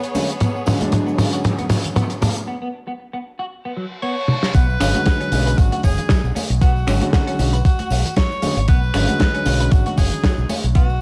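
A lightly swung sixteenth-note groove in 4/4 drives this groovy, cosmic nu-disco cut from a longer piece, carried at first by a damped 70s drum kit of dry, medium-tuned snare, hi-hat, toms, cabasa and finger snaps, with tambourine, congas and bongos struck with hard hands behind it. A dark, boxy baby grand piano with audible action noise holds down the accompaniment, while a clean, compressed electric guitar picks a riff through analog chorus and a low-pass filter, and a lush violin section sustains bowed chords in the background until 2.4 seconds. During a break, an electronic reverse cymbal rises from 3.7 seconds, and a bright, punchy tenor saxophone slips in with scooped notes and light vibrato through analog delay. At 4.5 seconds the drop lands with a thumpy, overdriven sampler-style kick up front and a fingered electric bass whose envelope filter and transformer saturation give it a bright, amped bite, the bass pumping against the beat alongside the piano. 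The whole piece sits in a small, lightly reverberant room with the soft haze of a cassette home recording, and the harmony hovers on a single minor sixth-ninth chord, apart from a brief chordless moment at 4.3 seconds.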